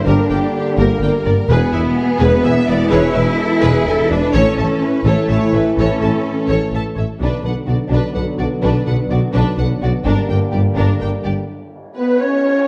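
A heroic, epic cinematic cue in 6/8 at 84 BPM, cut from a longer piece, opens with nearly the whole ensemble at once: a lush, bowed string body of violins, violas, cellos and double basses, with French horns, trombones and a mellow tuba holding sustained chords and low notes in the background. A rich, focused violin section carries the melody with vibrato, while a second violin line adds a smooth, even counterpart and the violas fill in the accompaniment. Underneath, a clear cello section joins the close, studio-sounding double basses and the tuba on the bass, with the trombones' bright edge and the horns' softer glow behind them. The harmony moves from Gm through E and A before shifting to Bm and back to Gm around 10.1 seconds, and most of the ensemble drops away near 11.3 seconds. At 12.0 seconds an airy, close-miked flute adds a brief second line as a punchy, distant trumpet section enters with a short final stab, all set in a dark production with a wet recital hall reverb.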